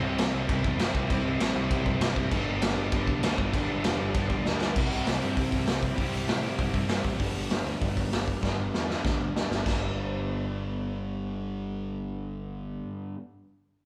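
A band playing live in one room, with light reverb, drives this rowdy, upbeat punk rock excerpt at 196 BPM in G major, alternating between C and G chords. Up front, a raw garage drum kit with a punchy kick, a medium-tuned snare and dark cymbals sounds gritty and saturated in a pumping small room, and it drops out at 9.7 seconds after a fill. A growling, overdriven picked bass sits beneath three picked guitars in the background: a crunchy overdriven one, a sludgy one, and a bright, double-tracked high-gain one that cuts out at 7.2 seconds.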